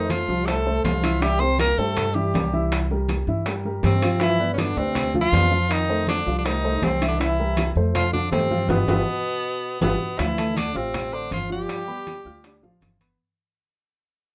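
Lively and sunny, this Afro-Cuban jazz excerpt at 160 BPM in C major puts a forceful, up-front tenor saxophone with scooped notes and vibrato over a veiled, bucket-muted trombone in the background, a dark baby grand piano with audible action noise, a thumpy pizzicato upright bass, thick-skinned congas, very quiet round bongos and ringing, saturated metal-shell timbales, with a drum fill and band accent from 8.7 to 10.2 seconds before a fade-out.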